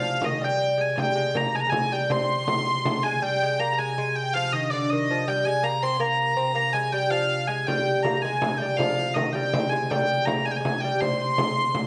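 Medieval dance in C minor, mysterious and driving at 108 BPM in 6/8, cut from a longer piece, where a rich, smooth hurdy-gurdy carries the melody up front between D5 and C6 over a delicate fingerpicked gut-string lute second line, a hollow stopped-flute chamber organ drone on C3 with a soft chiff, and a small bright frame drum that plays from 0.2 to 3.0 seconds and returns at 7.7 seconds, all set in a reverberant recital hall.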